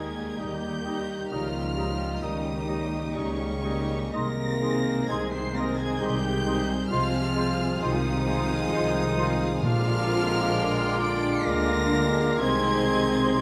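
Classical orchestral writing in a warm, tender mood, unfolding in a slow, rubato triple metre as a lush, vibrato-rich violin section sings the high melody over chords moving from Eb through Ab/C and Fm7/C to Bb7 and Cm. Beneath it, a hollow flute section, a bright clarinet, a distant oboe and a clear, focused second violin section weave quiet secondary lines, while a dark bassoon and a smooth viola section accompany, mellow French horns and tight trombones sustain chords, soft-attack trumpets add stabs, and an intense double bass section and an even cello section anchor the bass. Timpani enter briefly at 9.6 s, and a wet scoring-stage reverb gives the whole ensemble a spacious, roomy glow.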